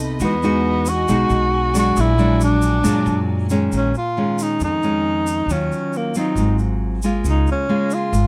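This intimate, wistful bossa nova excerpt opens with a fingerpicked nylon-string guitar, up front and classical in tone with audible finger squeak. A pizzicato upright bass with a woody sound sits beneath it, and a chamber string section plays sustained chords in the background, bowed sul tasto with light vibrato and a soft attack. From 0.2 seconds a breathy tenor saxophone carries the melody in a jazz style, up front and whispered, with gentle vibrato, scooped notes and a smooth top, while a grainy, mellow tube shaker keeps time at 136 BPM in a straight 4/4. The strings drop out at 3.7 seconds as the harmony settles into Bb minor, moving through Bbm7, Ebm9, Ab13 and Db6 after an earlier Emaj9 and Bb7alt. Close, detailed microphones and little reverb keep the sound dry and near, as though the players were in the same small room.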